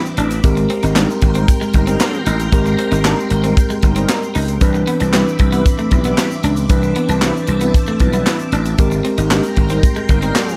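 A mellow tine electric piano and a swirling, vintage string machine, treated with ensemble chorus and phaser, open this danceable, smooth slice of early-eighties boogie funk at 115 BPM in a straight 4/4. A grainy egg shaker sits distant in the background, and by 0.2 seconds a tight, dry funk kit arrives up front with handclaps, hi-hat, a tight kick and a medium-tuned snare. Alongside it, a gritty, growly slap bass pushed through overdrive drives the low end, while an electric guitar at the edge of break-up plays a compressed, picked riff bathed in lush chorus. From 1.0 seconds a round, detuned synth brass with vibrato and a filter sweep adds a dark second line further back in the mix. The harmony moves from Abmaj9 to Cmaj9 and back again, with the sawtooth strings holding long, slow-attack chords above everything in a small room ambience, as this short excerpt from a longer piece plays out.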